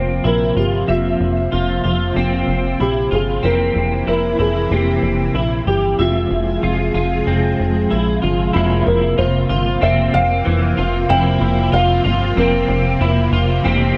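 This is a short cut from a longer dream pop piece, set in light reverb with a digital ambience that gives it a hazy, ethereal air and a melancholic mood. At a straight 94 BPM in 4/4, a felt-muted upright piano carries the melody, boxy and intimate, its thick-felt tone trailed by tape echo until it stops at 13.3 seconds. Beneath it, a dark, clean electric guitar sits in the background with tremolo and a subtle chorus, while a silky vintage string machine holds warbling sustained chords with a slow attack and long release. A second electric guitar, picked and slightly broken-up, plays arpeggios through ensemble chorus and tape echo. Up front, a punchy, funky analog bass with a fast-attack filter pluck and wave-folded, ring-modulated edge anchors the harmony, which moves from C7/F to Fm at 6.0 seconds and back to C7/F at 8.5 seconds as a new section begins.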